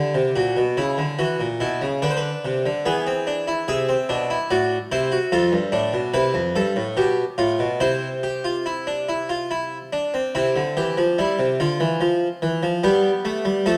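A solo harpsichord in the Flemish style, airy and full with two sets of strings and placed up front, carries this joyful, lively baroque-style three-part fugue at 72 BPM in 3/4 with a straight feel, spanning F2 to E5. The harmony moves from F#7/A# through Bm/D, E7 and Am before settling into C major at 5.3 seconds, with a new section arriving at 10.3 seconds and closing on F5 and G7 as the cut from a longer piece ends at 13.8 seconds. The dark production places the instrument in a moderate recital hall reverb.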